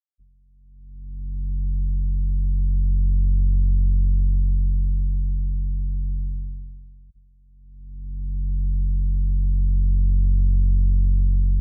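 Weightless and luminous, this ambient fragment in free time rests on a single round analog bass that sounds from 0.2 to 11.6 seconds around Gb1, its deep, dark blend of sawtooth and sine striking with a fast attack and then sustaining up front in a dry room.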